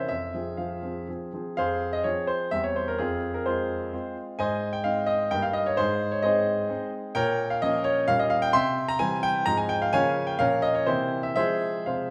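A warm, natural-sounding concert grand piano with deep bass plays alone and up front in this graceful, elegant classical-period sonatina excerpt in 3/4, its rubato phrasing spanning E2 to C6 and moving into a second section at 1.6 seconds, all set in a moderate recital-hall reverberation.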